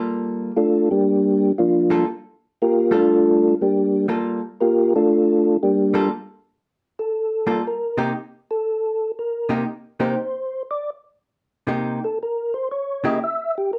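A hollow-body jazz guitar opens this bluesy, smoky jazz excerpt at 119 BPM in G minor, its clean, dark, picked tone compressed and up front as it lays down accompaniment over a swung 4/4. At 0.6 s a percussive tonewheel organ takes the melody, soft and flute-like with a second-harmonic percussion click, its sound turning through a slow rotary speaker and chorus vibrato. The organ carries a solo through the whole passage, sitting a little louder than the guitar and ranging from F3 to E5. The harmony rests on Gm9 before moving to Cm7 at 8.1 s and a C#dim7 at 12.2 s, while a moderate studio reverb adds a short sense of room. The guitar drops out at 13.2 s, leaving the mellow organ to close the cut at 13.8 s.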